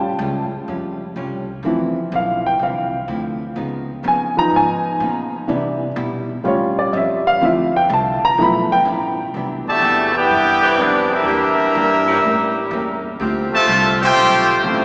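This energetic, brassy big band swing excerpt in C major opens with a warm, intimate baby grand piano taking a solo, its action noise audible and its notes short in sustain. Underneath, a woody pizzicato upright bass and a dark, clean hollow-body electric guitar provide quiet accompaniment at a swung 125 BPM in 4/4. The piano passage moves from A7alt through Dm9 and Db9 to Cmaj7, closing on G13 before the piano drops out. At 9.7 seconds the horns arrive on a Cmaj9: a clear, smooth-topped trumpet section carries the melody up front, while a brilliant, vintage-toned trombone section plays a second line with a light vibrato. A bright saxophone section holds sustained chords in the background from 10.6 to 13.9 seconds as the harmony passes through Em7b5 and A7b9 to Dm11. The whole ensemble sits in a wet church reverb with a small-speaker sound.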